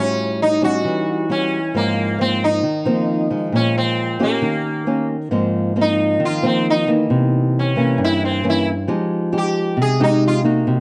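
A bright, buzzing sitar with shimmering sympathetic strings carries the melody up front in this sunny, romantic bossa nova excerpt, moving into a plucked solo at 5.3 seconds over a small, woody, fingerpicked nylon-string guitar on old strings that voices rich extended chords, all set in light reverb and steeped in the worn, warbling pitch drift of old cassette tape.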